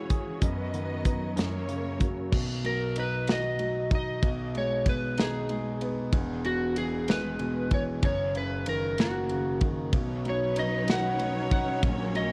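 A swaying 6/8 pulse at 63 BPM carries this heartfelt pop ballad in B major, a short cut from a longer piece, with a punchy, mid-forward studio drum kit of kick, medium-tuned snare, hi-hat, ride and crash sitting up front from 0.1 seconds, its top rolled off. An intimate concert grand piano with audible action noise and deep bass gives polished accompaniment under a slightly broken-up electric slide guitar melody, played with fingerpicks and trailed by tape echo, as the chords move from B/F# and F# through B, G#m/B, E and F#6 to Badd9. A lush bowed string section, expressive with vibrato and portamento, holds sustained chords at the opening until 2.3 seconds and returns at 9.9 seconds, all in a dark, warm production with a moderate concert hall reverb.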